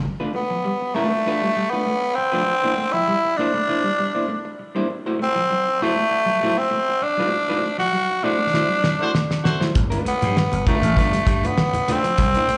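Gritty and strutting, this funk excerpt at 99 BPM rides a straight 4/4 feel through a chord cycle of G9, C9 and D9, returning to G9 at 9.8 seconds. A raspy, growling tenor saxophone carries the melody up front, with light vibrato and slapback echo. Beneath it, a dark, clean hollow-body jazz guitar plays fingered accompaniment while a mellow electric guitar sits in the background with a low riff, both touched by slapback echo. The vintage slap bass sounds a note at the very start, then returns at 9.8 seconds with a bright, amped, punchy bite, joined by low-tuned congas with thick skins and hard hands. A band accent begins at 7.3 seconds; the damped 70s drum kit enters at 8.5 seconds with a fill, its fat snare and tight kick dry and up front, and a clear horn section adds a brief second line around 9.0 seconds. The sound is that of a live gig heard through the venue's PA, with club reverb and a dulled top end.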